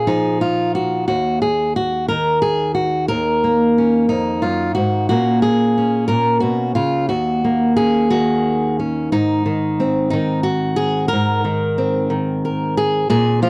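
In a straight 6/8 pulse at 60 BPM, this haunting, wistful folk passage from a longer piece features a solo fingerpicked steel-string acoustic guitar, up front with an auditorium tone in a dry, close 1970s-style studio sound with light reverb, spanning Eb2 to Bb4 in Eb minor as it moves through Ebm, Bbm and Ebm7 before opening onto Abadd9 at 9.1 seconds.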